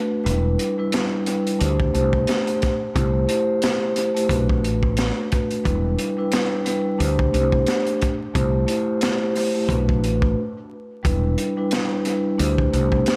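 A ringing vibraphone, struck with soft mallets and its motor off, sits up front with a metallic glow, colored by cassette tape and tape echo as it cycles Em7, D7sus4, C6 and Bm7 in this moody, reflective boom-bap hip-hop piece in E minor at 89 BPM, with a 16th-note swing. A dark, round fretless bass adds punch beneath, while a crunchy, gritty breakbeat kit with a high-tuned snare, a tight kick that stays muted until 1.6 seconds, and a rolled-off top carries its own tape echo, and a break arrives from 10.4 to 11.1 seconds. The echo-heavy mix, cut from a longer piece, is dusted with vinyl crackle and set in a plate reverb over a small room.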